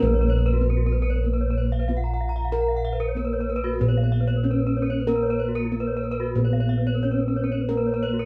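Bossed bronze gongs anchor this shimmering, brilliant Balinese gamelan passage, cut from a longer piece, with a round, up-front bass beneath a mellow, softly struck metallophone melody and two ringing metallophone arpeggio lines, one very quiet under padded mallets and the other struck with a horn mallet, both in a warm, boxy small-room sound, all three metallophones tuned in pairs so their tones beat. A bright, airy horn-mallet metallophone accompaniment joins at 5.1 s, with the ensemble playing live in a moderate studio room.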